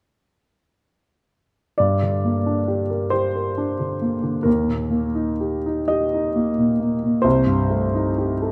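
A clear concert grand piano, up front with a deep bass and natural tone, plays a wistful, mournful romantic nocturne in G minor, slow and rubato in 12/8 at around 39-46 BPM in dotted quarters. Sounding from 1.8 to 8.5 seconds in this short fragment of a longer piece, its short-sustained notes span C2 to Eb5 and move from Gm to Eb and then to Am7b5/C. A moderate scoring-stage reverb with a 2.0 second decay surrounds the instrument.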